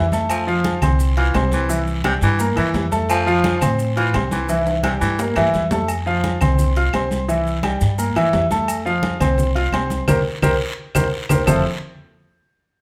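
Salsa with a festive, sunny mood, where a clear, up-front grand piano with audible action noise and an upright bass of dark, thumpy gut strings carry the harmony throughout, a raspy, gritty baritone saxophone with vibrato sounds distant and roomy until 5.6 seconds, and bright congas, a rasping guiro, grainy maracas and ringing agogo bells and timbales with woody claves in the background fill out the percussion, with drum fills from 4.5 to 5.9 and 10.9 to 11.5 seconds and a band accent between 10.1 and 11.5 seconds before this cut from a longer piece breaks off.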